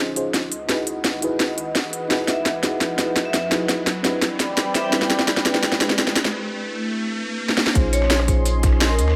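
A mellow, dark FM electric piano with dub echo, a smooth, detuned sawtooth pad with sidechain pumping and a round sine sub bass open this lush, dreamy liquid drum and bass at 170 BPM, where an up-front kit of crisp hats, rim clicks and a cracking snare drives a build-up of filter sweeps on the pad and on a metallic, hard-mallet vibraphone melody with fast motor vibrato and delay set in the background, while an electronic riser runs through a break at 6.3 seconds into the drop at 7.8 seconds, when a tight electronic kick and a gritty, compressed sampler-style soul kit in the background join over Bbm11.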